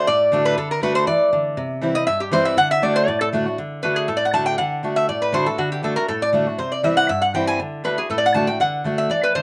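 A bright, nasal lap resonator guitar played with fingerpicks and a steel-bar slide carries the melody up front from the start, over a full-bodied picked dreadnought steel-string acoustic guitar, in this joyful, driving bluegrass clip at a straight 239 BPM in D mixolydian, moving between D and C chords under light reverb, with the metallic resonator taking a solo through the opening 3.6 seconds before a new section begins.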